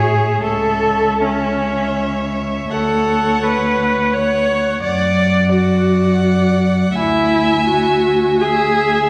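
Bathed in a 1.8-second concert hall reverb, this serene fragment of a slow romantic string quartet movement in 3/4 drifts with rubato at 75-87 BPM, as two veiled, muted violins carry the melody and a more distant second line over a dark viola accompaniment, bowed with soft attacks and portamento, and a smooth-topped cello bass, with the viola and cello sitting up front and all four players using mutes and vibrato as the harmony moves from A/C# through Dmaj7 and D/F# to E7/D.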